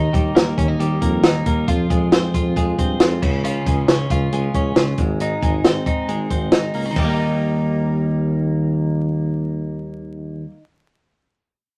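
Jangly indie pop at 136 BPM in Eb mixolydian, this nostalgic, youthful excerpt puts a clean, compressed twelve-string electric guitar up front, picking arpeggios over a mellow tuba bass with light vibrato as the chords move from Eb through Fm, Db and Ab, then back to Eb at 7.0 s. A compact cocktail drum kit, dry and punchy with a high-tuned snare and dark cymbals, sits close in the mix until 7.1 s, leaving guitar and tuba to carry the closing stretch. The recording has a moderate studio ambience and a layer of vinyl crackle.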